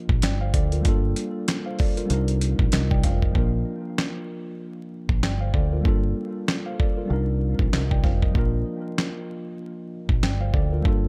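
A swung 16th-note groove at 96 BPM in 4/4 drives this tough, moody boom-bap hip-hop fragment, cut from a longer piece. The dusty, sampler-style drum kit sits up front, compressed and gritty, with a thumpy kick, a fat snare, handclaps and hi-hats that drop away at 3.4 seconds as the second section begins. Underneath, a deep dub electric bass, fingered and round, holds the low end with a dark, direct amped tone. A worn, slightly out-of-tune tine electric piano carries the harmony, mellow and clean, its sound filtered and colored by cassette tape and tape echo as it moves between Bb, Cm7 and Gm7. The mix is dry in terms of room sound yet heavy on echo, with vinyl crackle giving the whole track an aged texture.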